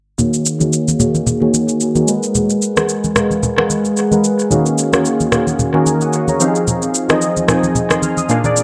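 Detuned sawtooth analog keys with a round, full-bodied chorus tone and a filter sweep sit up front across this hypnotic, deep amapiano fragment at 111 BPM in Eb minor, moving through Ebm11, Abm9 and Fm7 over a swung 4/4 groove of overdriven electronic shaker and rim click, low-tuned thick-skinned congas played with soft hands, tape echo on every part and a moderate spring reverb that gives the whole mix an echo-heavy depth.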